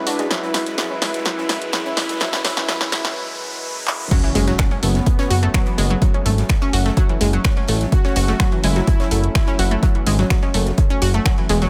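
Melodic techno with a dark, melancholic mood, cut from a longer piece: a chorused analog pad sits in the background beneath bright, tape-echoed analog pluck arpeggios and an evolving, soft supersaw melody carrying 12-bit sampler grit and dub echo, while a punchy analog drum machine with crash, finger snaps, handclaps, hi-hat and snare and a very quiet, saturated acoustic fusion kit drive a filter-swept build-up and riser that breaks at 3.2 seconds before the drop at 4.1 seconds, where a background impact hits and an up-front, tape-warm electronic kick enters, a fat, wave-folded analog bass follows moments later, and the pad, pluck, supersaw and bass all pump to the sidechain in light digital ambience.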